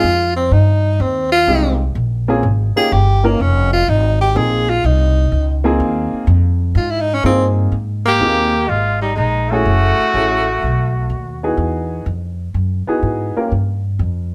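Heard through a moderate club reverb, this relaxed swing jazz excerpt opens with a close-miked tenor saxophone soloing with vibrato and scooped notes over a present baby grand piano and a woody, dark pizzicato upright bass, until a punchy, vintage trumpet takes the melody from 8.1 to 11.4 seconds while the saxophone moves to a second line.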